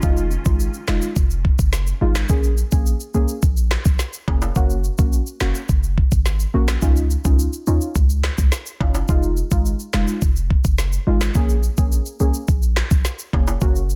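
A dense, heavily limited modern mix in a digital ambience carries this sunny, bouncy dancehall excerpt, where an up-front electronic kit with knocking kick, woody snare and handclaps plays alongside a boomy, sine-like 808-style bass with a noise layer, while a soft, detuned, warbling chord stab with chorus moves through Fm7, Bbm7, Gb and Dbadd9 and a close, dry tube shaker and ringing timbales sit low in the mix.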